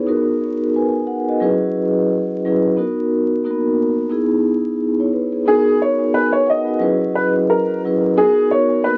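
A home recording on cassette opens the clip, with vinyl crackle, light reverb and a faded tape sheen across both instruments. It is a moody hip hop excerpt cut from a longer piece, moving at 89 BPM in 4/4 with a lightly swung sixteenth-note feel. A vibraphone played with soft mallets carries the accompaniment from 0.0 s to 9.0 s, metallic and ringing yet mellow, with a slow motor vibrato, sitting up front and filtered at both ends of its range. The chords drift through rich extended harmonies such as Bmaj7, C#m9/B and Bmaj13, with F#7sus4 returning twice. At 5.5 s a woody upright piano with a dark, natural tone enters up front to take the melody in a narrow middle register, playing through to 9.0 s.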